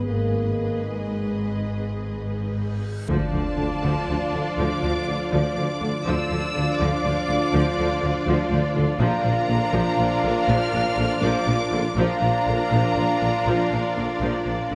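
Dark and dramatic, this cinematic passage in D minor moves at 80 BPM in a straight 12/8, cut from a longer piece. It opens on a G#m chord with the full string body already sounding: a lush violin section carries the melody high above a second violin line, while violas, a focused cello section and double basses fill out the harmony and bass, all bowed with rich vibrato, joined by a very quiet, distant French horn section on sustained chords. A huge, bright reverse cymbal rises at 2.8 seconds into an impact at 3.1 seconds, where the harmony turns to Dm and the brass grows: a mellow trombone section holds soft chords, a tight trumpet section adds stabs from the background, and a punchy tuba reinforces the low end. An additional string section with light vibrato sustains chords beneath, and at 9.0 seconds the progression settles onto Bb. The whole ensemble sits in a wet concert hall with a long reverb tail, giving the passage a distant, roomy grandeur.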